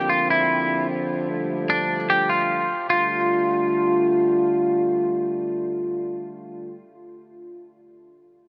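In free time, this blissful, floating hip hop excerpt in F major sets a clean, picked semi-hollow electric guitar melody, compressed and up front with tape echo, that plays until 4.1 s, against a dark, tight French horn section holding classical-style sustained chords until 6.9 s, moving from C9sus4 to F69 at 1.3 s, all inside a huge ambient reverb.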